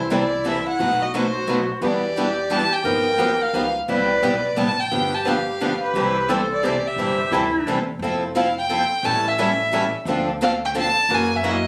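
A lively, charming jazz manouche excerpt swings in 3/4, its eighth notes lightly lilted as two picked acoustic guitars keep the accompaniment going from start to finish, one a bright, boxy swing-style instrument and the other a fresh-stringed parlour guitar sitting further back. Up front, a single bowed violin carries the melody with a nasal, reedy gut-string tone, light vibrato and a period flavour, heard close. A clear clarinet with a soft attack and gentle vibrato shapes a second line beneath it in jazz style, dropping out at 7.8 seconds. Underneath, a pizzicato upright bass on gut strings adds a woody, dark, thumpy pulse low in the mix. The harmony moves through colourful jazz changes before shifting toward F major at 8.0 seconds for a new section, and the whole ensemble sounds as if caught on a phone in a club with moderate reverb.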